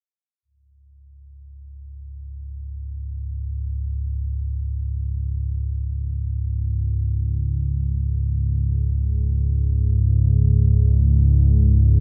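A lone high C#5 sounds at 0.4 seconds, and at 1.5 seconds a deep, rumbling drone slowly swells in, settling between C#2 and G#2 and holding until the close at 12.0 seconds. This short ambient excerpt from a longer piece drifts in free time, with a dark, desolate and ominous mood. The drone sits up front, its detuned triangle and sawtooth tones wave-folded into a dark, shadowed mass with a slow attack, long sustain, long release and its own built-in reverb. Around it hangs a cavernous cathedral space, its long reverb tail smearing the sound. The recording has the muffled, dulled top end of cassette tape, which deepens the gloom.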